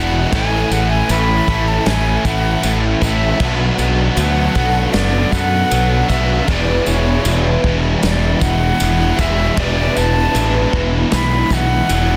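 A breathy, close-miked concert flute carries a wistful, blissful melody through digital delay over shimmering, octave-doubled twelve-string acoustic arpeggios with chorus and delay, a bright double-tracked distorted guitar riff, a chorused overdriven electric guitar, a hollow-toned overdriven semi-hollow guitar bathed in reverse reverb, and a growling, punchy fingered bass up front, before a loose small-room indie drum kit with a tight, softly clipped kick and a jingly tambourine join at 0.3 seconds in this 78 BPM shoegaze and dream-pop fragment in E mixolydian, moving through Amaj7, Bm7 and E7(omit3) in a dense, heavily limited modern mix.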